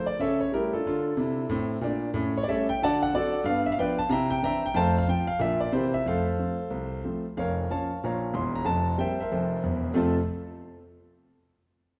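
Exuberant and swinging, this brisk stride-piano jazz fragment in F major at 184 BPM features a solo concert grand, intimate and up front with deep bass, long sustain, a boxy tone and audible action noise, ringing in a hall-like reverb through chords moving from A7/C# and Dm7 to a Bbm/F turn near 7.4 seconds before settling on F at 10.0 seconds.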